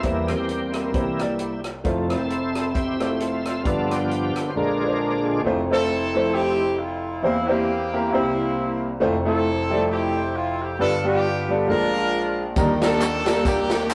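A shouting, lightly overdriven tonewheel organ opens this uptempo gospel excerpt with a solo of full, sustained chords, colored by key click, chorus vibrato and a slow rotary speaker. Beneath it, a clear concert grand piano with deep bass sits up front as accompaniment, while a distant, roomy big-band drum kit swings at 135 BPM in 4/4, its boomy kick and medium-tuned snare joined by hi-hat, ride cymbal and rim clicks. The organ drops out at 5.4 seconds, and a tight, jazz-style horn section takes the melody from 5.7 seconds with clear tone and vibrato, over a progression that moves through C7, Fmaj7, G7 and Bb7. At 12.6 seconds the organ and drums return, close acoustic tambourine and group handclaps join in, and the harmony lifts to Ebmaj7 as the piece is cut off. A stone-room reverb and the rough, saturated character of a rehearsal-room recording give the whole an uplifting, jubilant feel.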